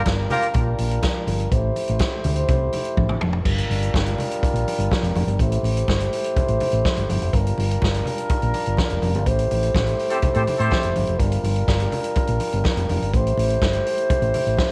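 A straight 4/4 disco groove at 124 BPM drives this danceable excerpt in G dorian, with a vintage acoustic drum kit up front from 0.1 seconds, its punchy kick, medium-tuned snare, hi-hat, crash cymbal and toms sounding natural in a studio room, and a drum fill from 3.0 to 3.5 seconds leading out of the opening section. Ringing, medium-tuned congas sit in the background of a small room throughout. A fingered electric bass, dark, round and amped, holds the low end up front, ranging from F1 to A2. Above it, a French horn section in classical style sustains chords between G3 and C5, its tone carrying light vibrato and a distant, roomy quality. A clear, pop-style horn section with vibrato and octave doubling punches out stabs at the very start and again from 10.1 to 10.9 seconds, within a band accent spanning 9.3 to 11.2 seconds. The harmony alternates between Gm7 and Am7 under light reverb, keeping the mood driving and danceable.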